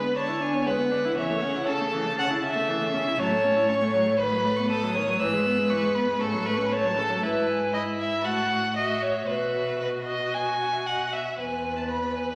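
An up-front second violin carries a smooth, even second line with vibrato beneath the intense first violin's high melody in this lively, spirited excerpt of a quick classical-period string quartet movement, while a clear viola supplies bowed accompaniment and a focused, distant cello holds the bass, all four players sounding together from the opening through about 12 seconds in a reverberant recital hall with vinyl crackle.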